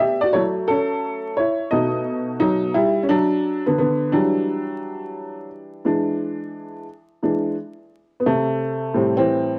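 A woody, slightly detuned upright piano plays alone from 0.0 to 9.6 seconds in this nocturnal, smoky hip hop fragment cut from a longer piece, its worn, short-sustained tone sitting up front in a swung groove through chords like F#m7, B7, Em9, E7 and Am7, framed by moderate spring reverb, studio ambience, cassette character and vinyl crackle.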